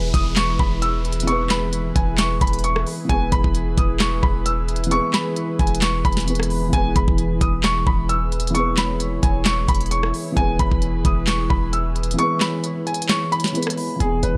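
This trap-flavored hip hop excerpt opens with a worn baby grand piano carrying the melody through a tape echo. Beneath it, a soft, felt-muted upright piano plays the accompaniment, and a warbling, nostalgic lo-fi pad holds sustained chords with chorus and its own reverb, while an electronic downlifter sits in the background until 3.1 seconds. A deep, boomy 808-style bass anchors the low end, its sine tone layered with noise and decaying after a fast attack. The trap drum kit arrives almost at once in a half-time feel, with a knocking kick, sharp snare, crisp hi-hats, handclaps and rim clicks, all overdriven and roughened by vintage 12-bit sampler grit and placed up front in a small room. The mood is triumphant yet wistful, with the upright sounding mellow and intimate and the pad sounding mellow against the drums. The kick drops out from 12.2 to 14.0 seconds, and the overall mix stays dry.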